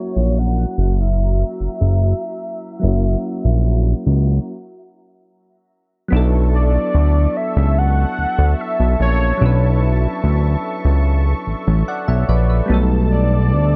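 A velvety synth lead with gentle vibrato carries the melody from the first moment, over round, mellow electric-piano-like keys and a vintage, warbling analog pad, all three shimmering with chorus in this moody, late-night contemporary R&B excerpt. A fat, detuned analog bass joins at 0.2 seconds and sits up front, thick and sawtooth-edged, as a filter sweep runs through the opening and a stop lands at 4.5 seconds. The dark, low-passed production stays dry while the harmony moves from F#7 to Bm11 at 6.1 seconds, closing on a B7alt.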